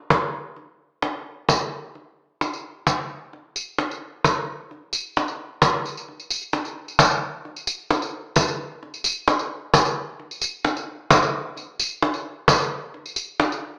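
A woody, up-front cajon with faint snares and hard hands opens this nostalgic, hopeful folk excerpt at 131 BPM in a straight 3/4, joined at 1.5 s by a jingly, bright tambourine played close, all heard through a rough home-demo mix with a small-room reverb and an AM-radio tone, as the piece moves into a new section at 7.0 s.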